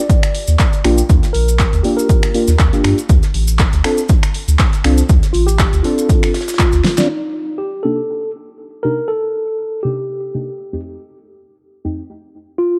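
A punchy, overdriven electronic kick sits up front in this smooth, deep house cut at 120 BPM in C dorian, layered with a fat-snared house kit of snaps, claps and filtered hats, a very quiet dry soul kit, grainy maracas and a round sine sub bass, while a dark, soft chord stab pumps through chorus, phaser and tape echo and a mellow, clean tine electric piano carries the melody through analog delay, the drums dropping out after a fill at 6.8 seconds to leave piano and stabs over the Cm7 to F7 close, the stabs ending at 12.0 seconds and the piano carrying on until 12.8 seconds.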